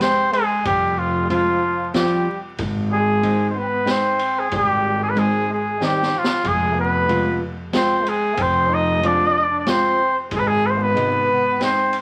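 A punchy, up-front cornet sings a soulful, bittersweet klezmer melody with light vibrato at 93 BPM in 3/4, over a distant, roomy trombone second line, a dark fingerpicked nylon-string guitar with finger squeak, and a small-room street-band drum kit with boomy kick, high-tuned snare and dark ride cymbals, before a focused, close bowed double bass joins at 0.7 seconds, a drum fill arrives at 5.8 seconds, and the Fm and Ab harmony sits in wet studio reverb under a layer of vinyl crackle.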